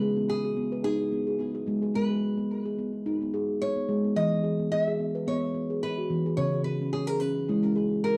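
A home cassette recording set in a wet, moderately reverberant studio space gives this short, gentle and hypnotic world-meditation fragment a soft, intimate glow. Up front, a steel tongue drum struck with soft rubber mallets rings out round, pure arpeggios through a cassette-tape tint and analog delay, while a small, bright nylon-string guitar, fingerpicked and also touched with analog delay, carries a quiet melody above it from start to finish. Over a lightly swung 4/4 pulse, the harmony moves from a minor chord to a major chord and then settles on an open fifth, keeping the mood calm and trance-like.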